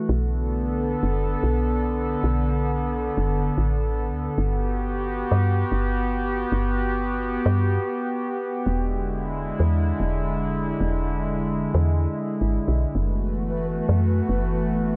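A warbling, nostalgic pad of detuned sawtooth and triangle tones sustains mellow chords through Bm7, Gmaj7, E7 and F#m7 over a soft, round, woody FM bass with tube saturation in this eerie, glitchy IDM excerpt at 112 BPM, tuned to A4 = 436 Hz, while a resonant, bubbling stepped-filter texture slips in quietly in the background at 13.0 s, all colored by worn cassette-tape pitch drift and light reverb.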